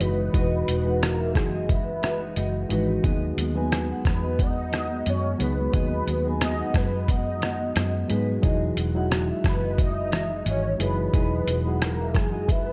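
A muffled, thumpy lo-fi sampler-style drum kit of kick, hi-hat and rim click sits up front in this sunny, nostalgic indie and bedroom pop excerpt at 89 BPM with a light swing. Beneath it, a round, foam-muted fingered electric bass plays punchy low notes, a reedy electric piano plays through its built-in speakers, and a dark, clean electric guitar drifts in the background with ensemble chorus and warbly pitch. Over these, a detuned, vibrato-laden synth lead carries the melody through ensemble chorus and tape echo, while a ringing, metallic vibraphone with slow motor vibrato adds a second line over Emaj9 and B6 chords in a lightly reverberant cassette-tape sound.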